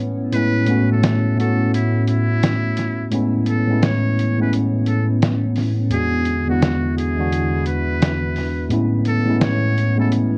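Dreamy and nostalgic, this short lo-fi hip hop cut pairs a worn, slightly out-of-tune tine electric piano, up front with a cassette-tape haze, against a warbling, detuned pad in the background, while a buzzy, thin metal-muted trumpet carries a jazz-style solo melody with light vibrato over a muffled, pitched-down sampler drum kit of hi-hat and snare, all set in a dark, small-room sound.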